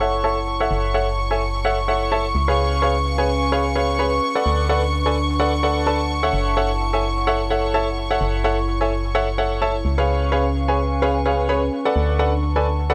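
A dry, gritty hardware recording with a digital ambience carries this soulful, bittersweet house passage at 128 BPM in F# minor, lightly swung and cut from a longer piece. Up front, a bright, worn grand piano riff runs through a low-pass filter and tape echo beside a hollow, percussive FM bass with an organ-like tone, while a pure, floating symphonic violin section holds sustained chords on C#6. A warbling, nostalgic lo-fi pad with chorus and built-in reverb fills in the texture as the chords move through F#m7, C#7 and Bm7/D.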